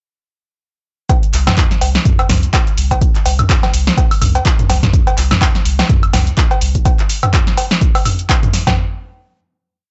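An up-front analog drum machine drives this short, raw acid house piece at 125 BPM in 4/4, with a 57% swing on the sixteenths and tuning set to A4 = 444 Hz. The drum machine has a punchy snare and clap carrying the backbeat, programmed closed and open hats, shaker, a high woodblock, cowbell and a low tom, with a short room on the snare, clap and hats and a re-recorded small-room character. Alongside it, an analog electronic kick pounds out a four-on-the-floor pulse, and both drum parts run through the whole drop from 1.1 to 8.8 seconds. A deep, warm, round sine sub bass around C2 enters at 1.3 seconds and plays a mellow, sustained off-beat line with a fast attack, pumping through sidechain until 6.8 seconds. The mix is dry and gritty, with little reverb and a hardware sound whose top end stops at 8.0 kHz, giving the whole piece a rough, close feel.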